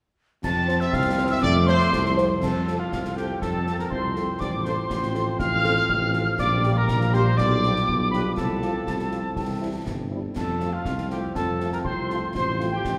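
This short cut from a longer military-style wind band march sits in a wet concert hall, with a long reverb tail giving the ensemble a spacious, distant quality. At 121 BPM in a straight 2/4 and F major, the mood is rousing and proud, carried by a dark, roomy trumpet section on the melody while an airy piccolo with vibrato and rolled-off highs sings a second line above it. Underneath, a tight trombone section holds sustained chords in the background, and a mellow, vintage-tinged French horn section adds accompaniment from 0.7 to 12.7 seconds. The dark, smooth-topped tuba stands up front on the bass, and concert snare drum, clash cymbals with bright shimmer and concert bass drum keep the march in a live acoustic room. After a brief opening phrase, the harmony moves from F through F/A, Gm/Bb and G7/B to F/C and a C chord before settling back on F near the close.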